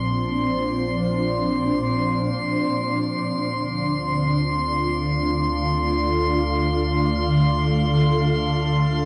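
Peaceful and gently glowing, this free-time ambient passage, cut from a longer piece, moves from Bbadd9 to Dm7 at 2.9 seconds. A shimmering, ethereal pad sits up front with chorus, phaser and an octave-up sheen, while a drifting, glassy harmonics texture hovers high above with chorus and its own reverb. Beneath them, a round, deep analog bass with tube saturation fades in across the whole 9.1 seconds, all bathed in a lush shimmer reverb with a long tail.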